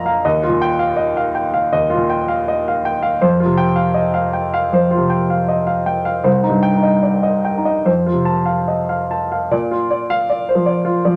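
Rubato and unhurried at around 72-82 BPM in 4/4, this tender, hopeful neoclassical minimalist piano excerpt in Bb major features a solo concert grand with a clear, up-front tone, deep bass and short sustain, set in moderate studio reverb as its chords move from Ebadd9 through Fsus2, Cm and F before settling on Bb at 9.5 seconds.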